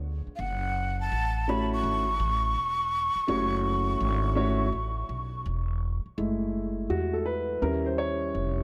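A woody, thumpy upright bass with gut strings opens this cool, mellow hip hop excerpt at 83 BPM in F# minor, its plucked notes swinging over a F#m7 chord. At 0.4 seconds a breathy jazz flute with vibrato and an analog delay carries the melody until 5.4 seconds, and a dark, smooth vintage baby grand piano with long sustain joins the accompaniment from 1.5 seconds. From 6.2 seconds the piano takes a solo, and at 7.6 seconds the harmony turns to D#7b9, all within a dreamy mix soaked in plate reverb.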